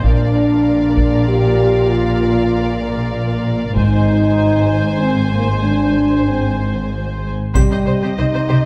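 Mellow, up-front French horns hold sustained chords over heavy-stick taiko drums in this adventurous, heroic fragment of an epic orchestral film score, moving at 96 BPM in 3/4 through Bb mixolydian with chords shifting from Bb to Ab. Lush bowed strings fill the texture: softer violins with vibrato carry the melody and a second line, rich violas add accompaniment, and woody, distant cellos join close, expressive double basses on the bass. At 7.6 seconds the harmony moves to Cm as a faint triangle enters, all set in a dark production with a reverberant scoring-stage sheen.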